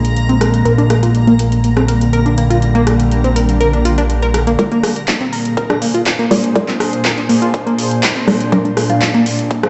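A shimmering, ethereal pad opens this uplifting, expansive progressive house excerpt in Bb mixolydian, its chorused, granular chords sitting beside a fat, detuned analog bass up front and a pop drum kit of handclaps, metallic overdriven hi-hats and rim clicks, all pumping at 122 BPM in a straight 4/4. A reversed, dreamy texture glows faintly in the background high above, while a tight, driving sequenced synth enters at 0.3 s with detuned sawtooth arpeggios carried by chorus and tape echo as a filter sweeps across its sound. The harmony moves between Bb7 and Gm/Bb. At 4.6 s the bass and reversed texture stop and the build-up begins: a lush unison pluck enters alongside the arpeggios with decaying stabs colored by cassette tape and tape echo, its filter sweeping, while a punchy, high-passed electronic kick joins in the background. A lush hall reverb and the sound of a big system in a bare room give the mix a spacious yet dusky character.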